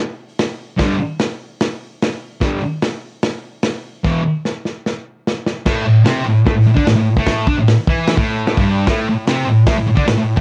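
A thick, bright fuzz guitar sits up front, its double-tracked, picked riff entering at 0.8 seconds and driving through G5, E5 and A5 power chords in this swaggering, rowdy garage rock excerpt at 149 BPM in a straight 4/4. Underneath, a crunchy breakbeat kit with a punchy kick, medium-tuned snare, hi-hat and dark crash cymbals carries vintage 12-bit sampler grit and a rolled-off top, and it breaks into a fill from 4.0 seconds before the riff shifts to a new section at 5.7 seconds. A moderate studio reverb and a cassette-tape sheen give the whole cut a rough, lo-fi edge.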